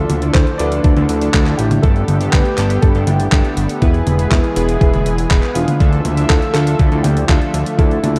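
An overdriven 12-bit drum machine playing handclaps, hi-hat and toms enters at 0.1 seconds, joined at 0.3 seconds by a thumpy, overdriven electronic kick sitting up front, both re-recorded in a large room, in this bittersweet, nostalgic italo disco piece at 121 BPM in 4/4. A fat, wave-folded analog bass carries the low end, while an intimate grand piano with audible action noise plays the melody through digital delay over a Dmadd9, Gadd9, E and Dmadd9 progression. Behind them, a lush, warbling unison pad holds chorused chords and a glossy, tape-coloured polysynth adds mellow stabs, all in a dark production with light digital reverb.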